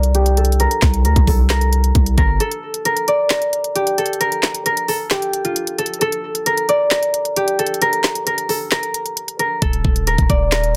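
A concert harp, mellow and ringing, carries the melody in this eerie, brooding trap excerpt at 133 BPM in a half-time feel, its fingerpicked line passing through a low-pass filter sweep and digital delay. A trap kit with a knocking kick, woody snare, crisp hats and handclaps sits up front beside a punchy, heavy 808-style sine bass with a noise layer, which drops out for a break at 2.4 seconds and returns at 9.6 seconds. Light reverb surrounds a dense, heavily limited modern master.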